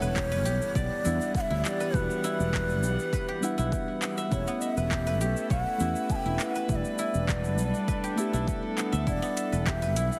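Heavily compressed with a radio-like sound, this recording sits in light reverb and a digital ambience. It is a hypnotic, mystical piece of organic downtempo in E dorian, moving at 101 BPM in a straight 4/4, cut from a longer work. A breathy ney carries the melody with vibrato and tape echo, over muted, felt-like synth keys treated with chorus, delay and sidechain pumping. A reedy chamber string section holds distant sustained chords with gut-string tone, also pumping, while a guzheng rings out silvery arpeggios through delay. Up front, a growly fretless electric bass with lush chorus anchors the low end, and an overdriven deep house drum kit with metallic hats, handclaps and shaker is joined at 0.2 seconds by an overdriven electronic kick drum. A very quiet electronic impact marks the opening until 1.9 seconds, and the harmony moves from Em9 to A7/E, then G69/E, before returning to Em9 at 9.1 seconds.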